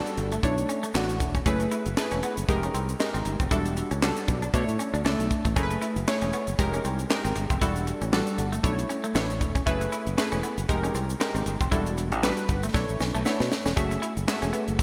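A punchy, sawtooth polysynth with a filter sweep and chorus comps up front through this slick early-eighties boogie funk clip at 117 BPM, with a 16th-note swing and a chord cycle of Bm11, F#m11, Fm11 and Em11 that shifts to F#m9 at 13.8 s. Alongside it, a growly fingered electric bass and a tight, dry drum kit with a high-tuned snare, kick, hi-hat, handclaps and gated reverb drive the groove, with the drums adding a fill from 12.7 s. In the background, a twangy, slightly broken-up guitar riff with lush chorus and a grainy tube shaker sit within a wet hall reverb and a bright digital 1980s-style production.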